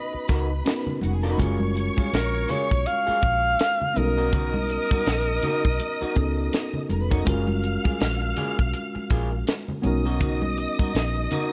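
An 82 BPM groove in 4/4 with a lightly swung sixteenth feel anchors this short cut from a lush 1970s-style soul piece, smooth and warm in mood. A tight funk kit with a high-tuned snare and tight kick sits up front beside a round, foam-muted fingered bass, while congas with a bright, thin skin and soft hands sit in the background from 0.7 seconds. A tine electric piano, worn and slightly out of tune, supplies the accompaniment beneath a picked guitar riff through a small old amp that sounds slightly broken-up and lo-fi. A warm studio string section, bowed with vibrato and portamento, carries a second line high above. Up front, a dark, jazz-style alto saxophone takes the melody until 6.9 seconds. The chords move between Bmaj7 and F#maj9, and a light small-room reverb surrounds the band.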